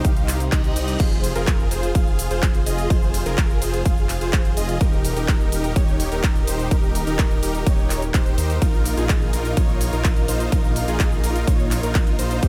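A dry mix with little reverb puts an overdriven, punchy electronic kick drum up front in this emotional, anthemic slice of festival progressive house, cut from a longer piece and moving at 126 BPM in a straight 4/4. A huge, bright supersaw riff carries the harmony through Cm, Fm, Eb and Bbsus4, its detuned sawtooth chords pumping against the kick and trailing dub echo. Beneath it, a thick detuned saw bass with a saturated, chorused body pumps in the low register, while a lush unison pad with a slow attack and long release sits in the background, colored by chorus and phaser. The big-room dance kit adds overdriven handclaps, hi-hat, ride, crash and cabasa. A faint reverse cymbal sweeps through from 0.4 to 1.0 seconds near the start, and every other part plays for the full 12.5 seconds.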